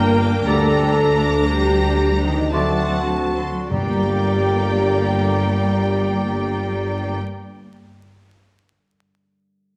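Awash in scoring-stage reverb and a layer of vinyl crackle, this solemn, melancholic fragment of a slow romantic orchestral movement sways in rubato triple time, easing back through its opening 3.7 seconds. A rich, distant violin section carries the melody over lush second violins, a mellow clarinet, warm violas, background French horns holding sustained chords, dark trumpet stabs and a ringing harp, while clear cellos, double basses and a tuba form the bass; flutes, a roomy oboe, a bassoon and very quiet trombones join at 0.5 seconds. Soft timpani enter at 3.7 seconds as the harmony settles home.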